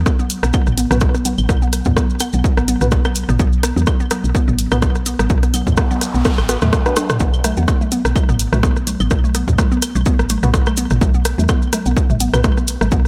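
Set in a digital ambience, this quirky, hypnotic minimal techno cut at 126 BPM with a light 16th-note swing rides an overdriven, punchy electronic kick up front and a soft, round, woody FM bass that pumps to the sidechain, while a bouncy, hollow square-wave pluck riff with chorus and delay, a mellow, nasal organ stab entering at 0.9 s, a background analog drum machine's hi-hat and rim click, a layered garage kit of claves, congas, rim click and toms, and grainy, close maracas fill out the groove, with a background noise sweep from 5.6 s and a drum fill at 6.3 s.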